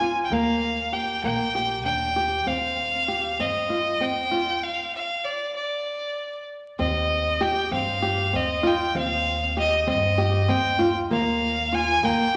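A biting, up-front solo violin with light vibrato carries the restless yet hopeful melody of this contemporary chamber excerpt in 7/8 at 195 BPM (eighths), over fingerpicked flamenco guitar arpeggios on fresh strings and a woody, thumpy pizzicato upright bass on gut strings, pausing in a break from 4.6 to 6.8 seconds before moving toward a closing Gm7 at 11.1 seconds, all tuned to A4 = 437 Hz and set in a wet concert-hall reverb with vinyl crackle.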